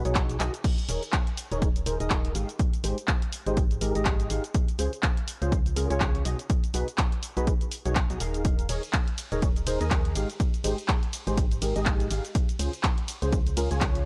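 A hollow, nasal organ stab opens this piano house excerpt at once, riding over a dark, organ-like FM bass with a fast attack and decaying notes, both pumping to the sidechain in a feel-good, euphoric groove. The stab carries an ensemble chorus and analog delay, its sine and triangle tones layered with noise and a moving notch. A punchy analog drum machine arrives almost immediately with a fill at 0.4 seconds, bringing cabasa, handclaps, hi-hat, ride and crash cymbal over a swung sixteenth-note feel. A tape-warm electronic kick sits up front as the loudest part of the mix. The harmony cycles twice through B6, Eb7sus4, Abmaj7 and Dbmaj7, and the sound is dry and gritty, with a cassette-tape hardware character.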